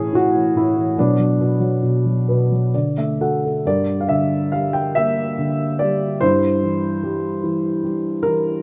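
A dark, mellow baby grand piano plays alone and up front in this melancholic classical excerpt, a lyrical, rubato passage in 3/4 at 64-74 BPM that moves from A to B minor and D, adds a piano fill from 1.8 seconds, then turns to G dorian at 3.6 seconds over Gm and C/G, its intimate, vintage tone carrying audible action noise in light reverb, tuned to A4 = 438 Hz.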